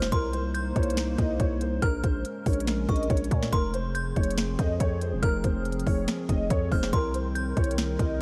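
A half-time trap groove in 4/4 drives this dark, hard-hitting hip hop fragment, where an up-front electronic kit of hard-clipped kick, sharp snare, crisp hi-hats and finger snaps sits over a growling, buzzy 808-style bass, while a mellow baby grand piano with long sustain carries the melody through analog chorus and delay, a tinkling FM synth tine bell adds a delicate high second line, and a moody, detuned analog pad holds sustained chords beneath, set in a light digital ambience.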